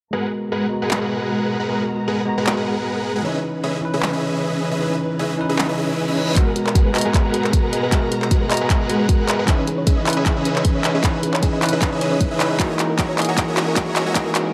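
A bittersweet, dreamy future bass excerpt in a swung half-time feel opens with a bell-like tine electric piano and a huge, detuned supersaw riff, both sidechain-pumped and echoed by digital delay, over a distant, lush bowed string section, with filter sweeps on the piano and strings and a pop drum kit of handclaps and hi-hat arriving at 0.9 seconds. A quiet reverse cymbal at 5.9 seconds leads into a build-up at 6.4 seconds, where a punchy, up-front electronic kick, a drum fill and mellow, chorused thumb-piano-like synth pluck arpeggios join, with a filter sweep on the arpeggios and a final riser, all set in light digital ambience.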